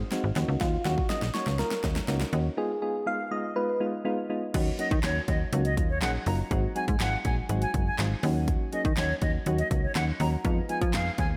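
Driving and confident, this dance-pop excerpt from a longer piece moves in a straight 4/4 through a dreamy mix soaked in a lush hall reverb. A snappy, metallic FM slap bass sits up front with sidechain pumping, joined by a punchy, layered electronic drum kit with a fat snare, bright hats, handclaps and crash cymbal, which opens with a drum fill during the build-up. Mellow, detuned electric-piano-like synth keys with chorus and pumping fill in the harmony over chords moving between Ebm7, Fm7b5 and Ab7. A round, keys-like struck synth lead with vibrato carries the melody from 0.6 to 3.8 seconds, wrapped in a diffuse ambient delay. Shortly after the drop at 4.5 seconds, an airy silver concert flute enters at 4.8 seconds and takes over the tune with a crisp attack and a bright, slightly unsteady tone, pumping along with the groove and trailing its own diffuse delay.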